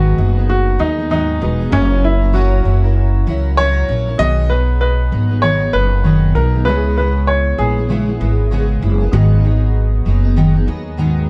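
Acoustic pop in B major at 97 BPM with a gentle sixteenth-note swing, this easy-going, sunny excerpt sets a woody, polished upright piano melody, up front with plate reverb and tape echo until 8.8 s, over a full-bodied, double-tracked jumbo steel-string guitar with fresh strings and audible finger squeak, a soft felt-muted upright piano sitting mellow and intimate in the background with its action noise showing, and a growly pizzicato upright bass up front in the low end, as the chords move from G#m7 and F#7 to B6 and C#m7 within a dark, lightly reverberant production.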